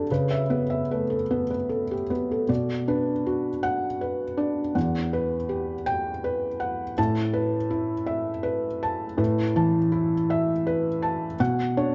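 In a rubato 6/8 lilt at 54 BPM counted in dotted quarters, this wistful, reflective neoclassical minimalist fragment, cut from a longer piece, features a solo felt-muted upright piano, soft and mellow with an intimate, up-front presence and audible action noise, ranging from E2 to A5 as its harmony opens on Aadd9/C#, moves into a second section at 2.5 s through Bm, Emadd9 and Asus2, and settles on Bmadd9 at 11.4 s, the piano sitting in a moderate recital hall reverb within a dark production carrying a faint mains hum.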